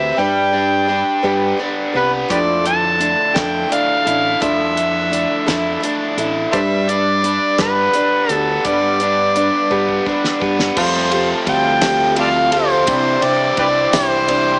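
Folk rock and heartland rock excerpt in a slow, dusty and reflective 6/8 at 57 BPM, where a gritty, amplified harmonica carries the melody up front over a boxy picked archtop acoustic, a double-tracked overdriven electric guitar riff and a round electric bass, with a damped 70s kit with a fat snare entering at 2.3 s, and after a drum fill a soft, flute-like tonewheel organ through a slow rotary speaker and a jingly tambourine join at 10.8 s as the chords move from G and Dmadd9 to Fadd9 and Cadd9, all with light reverb and a small-speaker sound.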